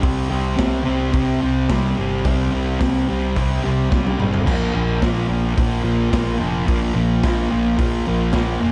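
Garage rock with a swaggering, rowdy mood, this short excerpt of a longer piece moves at 108 BPM in a straight 4/4, with a thick, double-tracked fuzz guitar riff up front over chords moving from C5 to Bb5 at 4.5 seconds. Beneath it, an overdriven picked electric bass sits dark, round and punchy, while a raw acoustic drum kit with boomy kick, medium-tuned snare, dark cymbals, hi-hat and toms sounds saturated and gritty, pumping in its small room and rolling through a fill from 3.9 to 4.5 seconds. A moderate stone room reverb frames the whole, and the top end is rolled off.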